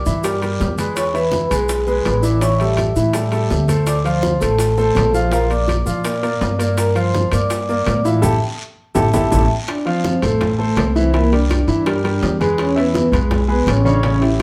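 Danceable and fiery, this salsa excerpt is led by a mellow, airy vibraphone played with soft mallets and a medium motor vibrato, over a clear, up-front grand piano and a woody, growly pizzicato upright bass. Ringing metal-shell timbales, raspy guiro, round low-tuned bongos and bright, thin-skinned congas kept very quiet fill out the percussion, with grainy maracas in the background until 9.4 seconds. A drum fill and band accent from 8.2 to 9.7 seconds lead into a repeat of the opening section, with the band played live in one room under a wet studio reverb.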